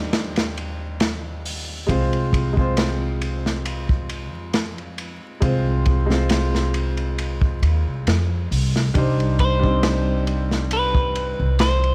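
Hypnotic and smoky, this brief trip hop excerpt sits in a slow 4/4 with a lightly swung sixteenth-note feel. A bright, woody upright piano carries the harmony throughout, its chords shimmering with harmonic tremolo as they move between Cmadd9 and Fm/C. Underneath, a thumpy pizzicato upright bass sits up front, joined almost at once by a crunchy breakbeat kit whose saturated, gritty sound brings a tight kick, a medium-tuned snare, hi-hat and a ride with dark cymbals. Near the end, at 9.4 seconds, a clean picked electric guitar enters up front with a short melody, and a crisp, very quiet metal-shell darbuka adds close, dry hand percussion just after. Light reverb, a studio ambience and a layer of vinyl crackle give the recording its dusty, intimate character.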